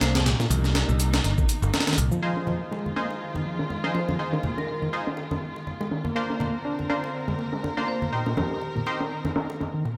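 Breakbeat with a raw, swaggering feel, swung on the sixteenths and cut from a longer piece. A gritty, pitched-up sampler-style drum kit with a thumpy kick and high-tuned snare sits up front, its hats, kick and snare all low-pass filtered, while distant bongos and congas ring brightly from a large room and a layered electronic shaker stays in the background until 2.2 seconds. A reedy, overdriven electric piano with fast tremolo carries the riff through a combo amp, and from 2.2 seconds a filter sweep moves across it. A growly, punchy picked bass drives the opening before dropping out at 2.1 seconds, and a nasal, detuned sawtooth chord stab with chorus and delay enters up front at 2.2 seconds. Beneath it all, a veiled, con sordino string section holds bowed chords that pump against the sidechain, while a ringing vibraphone struck with hard mallets plays short melodic phrases through a telephone-like filter and delay, moving from Cm7 to Fm7 and Bbadd9 in light digital ambience.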